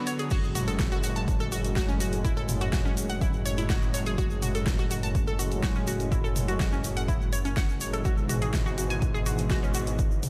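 A brassy analog pad opens this short excerpt of dark, cinematic melodic techno, its soft-attack stabs carrying chorus, sidechain pumping and a diffuse ambient delay at 124 BPM in straight 4/4, in F# minor. Almost at once an analog pluck spins bright, round arpeggios above it, ring-modulated and filter-swept with a noise layer, sharing the pad's chorus, pumping and delay. A deep house drum kit with a fat snare, hi-hat, toms and crash joins alongside a grainy tube shaker sitting close and dry in the background. At 0.3 seconds a punchy, layered electronic kick drops in with a menacing, saturated detuned saw bass that swells through its filter and pumps against the kick. The harmony rests on F#madd9 before moving to E/G# at 8.1 seconds, all wrapped in a light reverb.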